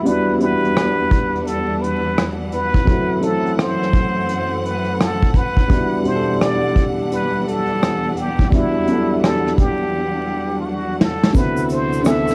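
A breathy, plunger-muted trumpet sings a whispered, wah-wah-inflected jazz melody up front, over a woody, dark upright piano and a clear, bowed string section holding sustained chords, with brushed drums joining at 0.1 seconds in this melancholic, hazy, swung lo-fi hip hop excerpt. The harmony moves from Em9 through F#m7b5 and back, and a drum fill from 9.9 seconds leads to a shift onto D13 at 11.3 seconds, where a grainy, saturated tube shaker enters in the background. Vinyl crackle and a small room reverb give the sound an intimate, worn character.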